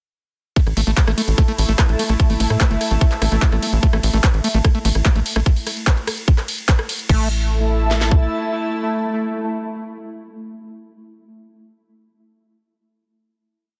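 A four-on-the-floor kick with a cracking snare drives this short, alien psychedelic trance piece at 147 BPM in 4/4, as an overdriven second kit adds bright programmed hats, claps, rim clicks, ride and crash while a dark, punchy sequencer bass gallops in sixteenths beneath a squelchy, screaming acid line whose three-step loop drifts against the bar through chorus and tape echo. All of them arrive around the drop at 0.6 seconds, soon joined by a pulsing gated drone, over a breathy, phased pad of slowly shifting chords. The drone and pad carry on, with the bass and the main kit lingering briefly, into a final chord from 7.1 to 10.4 seconds in a dense, heavily limited mix with a digital ambience.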